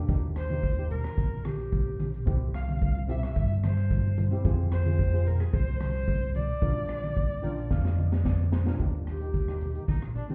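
A straight 4/4 calypso groove at 110 BPM in Eb major sets a festive, sunny mood, with a punchy, overdriven fingered electric bass up front, a street-band drum kit with a high-tuned snare and boomy kick, damped low-tuned congas, and shimmering steel pan played with soft rubber sticks supporting a rich, vibrato-laden bowed viola with tape echo that carries the melody, all heard muffled as if through a wall in a club, as the chords move Eb, C, Fm, Bb before steel pan and drum fills at 7.2 and 7.7 seconds lead into a viola solo from 8.8 seconds in this clip cut from a longer piece.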